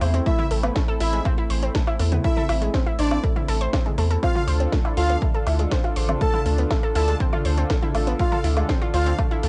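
A smooth, detuned sawtooth pad with 12-bit sampler grit, a warbling lo-fi pluck running arpeggios through analog delay, a round, deep analog bass and a techno kit of cracking snare, metallic hats, toms and woodblock all pump together from the start of this driving, cinematic melodic techno excerpt at 121 BPM in 4/4, joined at 0.3 s by a punchy up-front kick, an expressive sawtooth lead gliding with portamento and vibrato, and a fat, wave-folded polysynth line set bright in the background, moving from Am to Dm under cassette tape haze and light reverb in a homespun recording.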